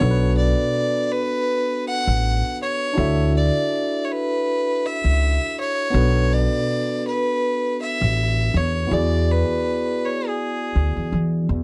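Nocturnal and smoky, this jazz-hop hip hop fragment from a longer piece moves at 81 BPM in 4/4 with a swung sixteenth-note feel, passing through Bm7, Dmaj9, Bm7 and E7. A close, biting bowed fiddle carries the melody with light vibrato and an airy, earthy tone. Beneath it sit a barky, lightly overdriven tine electric piano and a woody, growly pizzicato upright bass up front, all in a dark production with light reverb, and the fiddle stops at 11.1 s, just before the piece ends at 11.6 s.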